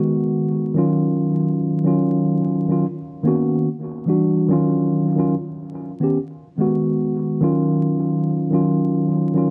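Hazy and reflective, this short hip hop excerpt moves at a relaxed 72 BPM in Eb minor with a swung sixteenth-note feel. A lone mellow tine electric piano plays up front from 0.0 to 9.5 seconds, its clean tone softened by a low-pass filter and analog delay as it moves through jazzy chords like Abm7, Ebm9 and Db13sus4. The dark production sits in a short, wet studio reverb with a layer of vinyl crackle.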